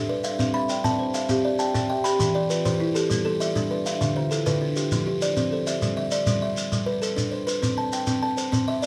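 This is a Southern African traditional piece built on an mbira-style interlocking cycle, with a warm, hypnotic mood, taken from a longer performance. It moves at 133 BPM in dotted quarters, in 12/8 with a straight feel, and sits in G mixolydian. A buzzing kalimba carries arpeggios up front with a woody, hollow-box tone, its soft fingertip plucks ringing with a mellow rattle. A second kalimba adds its own arpeggios with thumb plucks and an airy shimmer until it drops out at 6.1 seconds. A grainy shekere enters at 0.2 seconds and sounds as if played in a large room. The harmony cycles through C, Em, G, Dm and F before a later passage settles on G and C, all heard in a moderate studio reverb.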